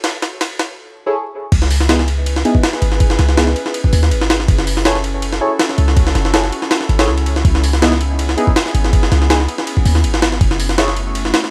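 Crackling with vinyl noise and dry in the room, this dark, frenetic drum and bass excerpt in C# minor at 162 BPM opens with a drum fill and a warbling, nostalgic tape-like pad before the drop at 1.5 seconds brings in a boomy, deep 808-style bass under gritty, overdriven, pitched-up jungle drums with a thumpy kick and high-tuned snare, while soft, phased chord stabs with dub echo and a moving notch drift over the F#m7 and C#m7 changes.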